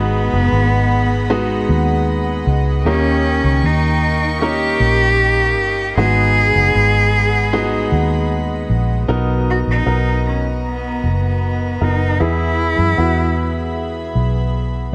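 Light studio reverb frames this melancholic, longing pop excerpt at 77 BPM in G# minor, where a focused, boxy bowed cello sings an up-front melody with vibrato until 13.8 seconds over natural grand piano accompaniment, soft floating sul tasto strings and a round, punchy foam-muted vintage electric bass, moving from G#m7 and D#7 into Bmaj7 and E at 9.1 seconds.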